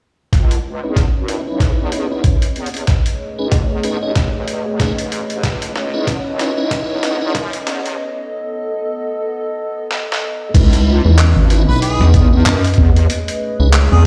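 A playful, funky glitch hop cut in C# minor at 94 BPM with a swung 16th feel opens at 0.3 seconds on a deep, moody analog pad pumping under the beat, a heavy, detuned wobble bass up front, and a gritty, tape-warm sampler-style kit of snare, hats, claps and crash with a thumpy, pitched-down electronic kick. Piping tonewheel organ stabs with chorus vibrato and dub echo join at 0.8 seconds as the build-up moves through a filter sweep and drum fills to a break at 8.0 seconds. The drop arrives at 10.5 seconds, a rubbery, hollow square bass enters at 11.1 seconds and, at 11.7 seconds, a distant, roomy harmonica melody with light vibrato, all set in a large studio reverb over C#m9, Amaj9#11 and B7 chords.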